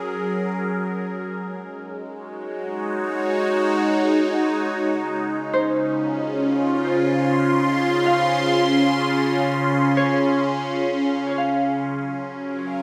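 A dreamy, reverb-soaked haze opens this peaceful ambient excerpt in free time and Db major, where a bright, up-front wavetable pad with detuned unison and phaser morphs through sustained chords from Gbadd9 to Dbmaj7, joined at 5.5 s by ringing, fingerpicked Celtic harp arpeggios set back in diffuse delay, before a fade-out begins at 9.4 s.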